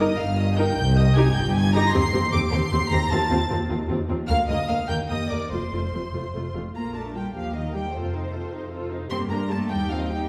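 A wet scoring-stage reverb with a 1.6-second decay places this string orchestra further back in the room, giving the short excerpt a spacious, enveloping sound. It is a quick, spirited classical-period movement in a lively 6/8 at 102 dotted-quarter beats per minute, cut from a longer piece. First violins carry the melody, climbing as high as D7 with a smooth, even vibrato, while the second violins sing a second line beneath them. Violas supply a focused accompaniment with a smooth top, and the cellos add a lush, symphonic depth alongside the double basses, which anchor the bass reaching down to F1. All five sections play together from start to finish over about 10.3 seconds, moving from an opening section built around C minor and E-flat colours to a second section from 6.8 seconds that turns through B-flat, E-flat, F7 and G minor.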